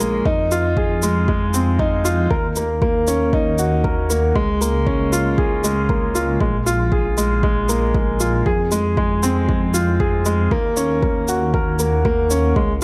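A straight 4/4 pulse drives this moving, hypnotic piano and strings electronica excerpt, with an overdriven, deep electronic kick entering at 0.3 s alongside a tape-warm shaker, while a dark, detuned sawtooth bass rumbles with sidechain pumping and a clear, woody upright piano riff sits up front, trailing tape echo over chords from Fm7 to Ebm7, all in a light reverb.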